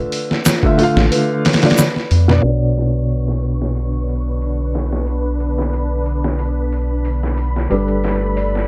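A brooding, smoky trip hop excerpt opens on a soft, muted upright piano with tremolo and tape echo beside a delicate, bell-like celesta in the background, before a compressed, pitched-down sampler-style drum kit with overdrive and a thumpy kick comes in up front, an egg shaker sits briefly behind it, a round, deep analog bass arrives at 1.0 s, and vintage string-machine cellos with ensemble chorus add sustained chords from 2.4 s under a filter sweep.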